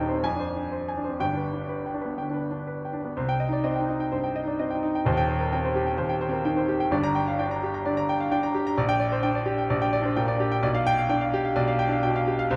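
The rhythm moves in a flexible rubato over a 4/4 metre, giving this brief cut from a longer classical piano study a heroic, brilliant sweep. A solo grand piano carries everything from 0.0 to 12.6 s, its tone clear and present, placed up front and ranging from deep bass to bright upper register. The opening passage leans on tense, unresolved harmony before a new section arrives at 3.2 s and settles into a steady minor-key progression. From there the chords shift gradually toward a dominant colour near 10.6 s, leaving the music poised at the cut. A moderate recital-hall reverb surrounds the instrument, and the production has a dark, warm character that frames the virtuoso writing.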